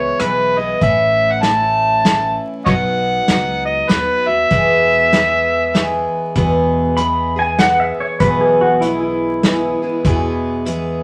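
A swung 3/4 groove at 98 BPM in E major sets an easygoing, down-home honky-tonk and classic country mood in this fragment of a longer piece: a gritty, overdriven harmonica with scooped notes and tongue slaps carries the jazz-style melody until 6.1 s over a bright, full-bodied picked steel-string acoustic guitar, woody, thumpy pizzicato upright bass and an airy, polished drum kit played with bundle sticks, before a twangy, clean pedal steel guitar with volume swells steps up front from 7.0 s, the whole mix sitting in a short, wet studio reverb dusted with vinyl crackle.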